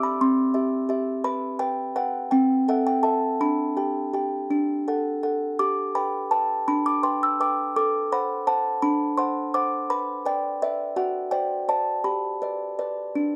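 A delicate, tinkling music box plays alone and up front from 0.0 to 13.4 seconds, in a dreamy, innocent classical lullaby at 56 BPM in 6/8 in G major, its mellow, plucked tones ranging from C4 to E6 over chords moving from C through G/B, Am/C and D7/A to a Bmadd11 before settling on G, all captured with close, detailed microphones and light reverb in this cut from a longer piece.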